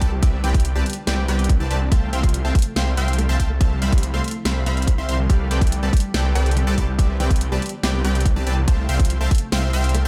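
Bathed in digital ambience, this lush, playful half-time future bass clip sets a hard-clipped, up-front electronic kick and a dubstep kit with a huge snare and metallic hats against a thick, saturated detuned saw bass and punchy supersaw stabs, both pumping to the sidechain, while a dark, clean electric guitar with analog chorus and tape echo sits in the background and a very quiet, ethereal pad with a slow attack and phaser sustains chords moving through Cmaj9, Fmaj9/C and Dm9/C.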